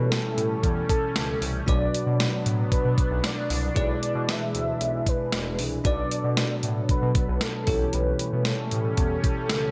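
Lightly reverberant, this dramatic, urgent 1980s-style pop excerpt in B minor moves at 115 BPM, with an up-front 12-bit drum machine of thumpy kick, snare, hi-hat and tambourine under gated reverb, a smooth sawtooth synth bass, a bell-like tine electric piano, a resonant slow-attack pad with a filter swell, dark synth brass stabs in the background, and a velvety, detuned synth lead carrying the melody through chorus and digital delay over chords that move through A7, Bm and E7/B.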